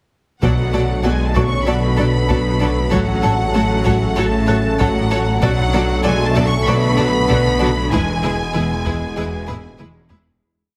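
A hybrid orchestral and electronic film score in B dorian at 96 BPM, futuristic and brooding, where a lush, vibrato-laden violin melody soars over a brighter second violin line, smooth viola repeated notes, mellow distant French horns doubling the tune at the octave, quiet trombone swells, and a bowed cello and double bass foundation reinforced by a deep sine sub bass, all moving through Bm7, F#m/A, Bm7 and E. Beneath the strings, a punchy, funky analog bass riff and a soft round pluck pulse in ostinato, a warbling, lo-fi tape-like pad hums from 0.9 s, and a felt-muted upright piano adds sparse, intimate single notes from 1.4 s. A close taiko ensemble keeps a big drum ostinato and lands a fill at 9.5 s as the piece fades out, all set in a scoring stage reverb with a heavily compressed, radio-like sound.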